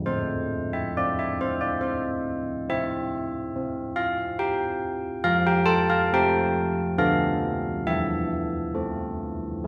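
A carillon plays alone from 0.1 to 9.7 s, its bronze bells sitting up front with a mellow, padded-clapper tone and a ringing minor-third overtone. This is a classical tune for church bells in A minor, moving at 69 BPM in a straight 3/4, with a solemn, wintry mood. The bells span D3 to A5, and the harmony opens on A minor, passes through an unharmonised stretch, then moves to F, Bm7b5 over D and A minor over E. A recital hall's reverb, with a 1.6-second decay, gives each stroke a long, wet tail. This short fragment is cut from a longer piece.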